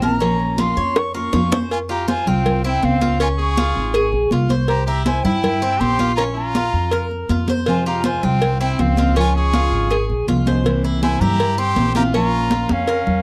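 Latin Cuban son and guajira at a brisk 161 BPM in F harmonic minor, sultry and nostalgic, with a reedy, airy flute carrying the tape-echoed melody over metallic tres arpeggios, woody pizzicato upright bass, hard-hand congas, tight cowbell and bongos, and a fingerpicked steel-string guitar that drops out at 1.7 seconds and returns at 7.7, while a brilliant trumpet with vibrato adds a second line from 1.7 seconds through chords moving Bbm, Db, C7 and Fm, all in a dry, close 1970s-style studio sound cut from a longer piece.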